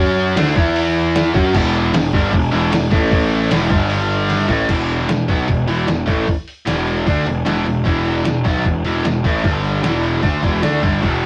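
A rough rehearsal-room recording with a wet booth ambience carries this powerful, anthemic hard rock excerpt at 152 BPM, where a biting, double-tracked overdriven guitar riffs up front on power chords over a growly fuzz bass, while a muffled, pitched-down sampler-style drum kit with a thumpy kick enters at 0.4 seconds and drives a fill at 4.3 seconds into the next section.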